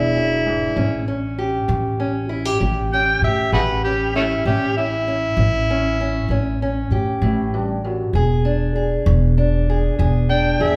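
Recorded live in one room and soaked in a large studio reverb, this short cut from a longer acoustic country blues piece moves with a swaggering, gritty stride at 65 BPM in 12/8, tuned to A4 = 438 Hz. Up front, an amplified, overdriven harmonica carries the jazz-inflected melody with tongue slaps and scooped notes. It sits over a dark, boxy parlour steel-string guitar fingerpicking the accompaniment and a woody, growly pizzicato upright bass with a thumpy low end, as the harmony shifts from E7 to A7 at 0.8 seconds and back to E7 at 8.1 seconds.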